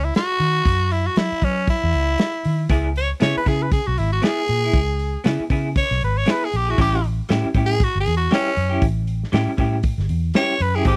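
A straight-eighth soul blues groove with a light sixteenth-note swing opens this smoky, brooding excerpt, carried by a dry, muffled drum kit with a tight kick and a dark, round, foam-muted fingered electric bass. Up front, a raspy, gritty tenor saxophone solos with bright vibrato across the whole passage. At 2.7 seconds a twangy, slightly broken-up electric guitar adds picked tremolo stabs as the harmony moves from F#5 to C#m7 and then A7, all set in a close, small-room 1970s-style studio sound.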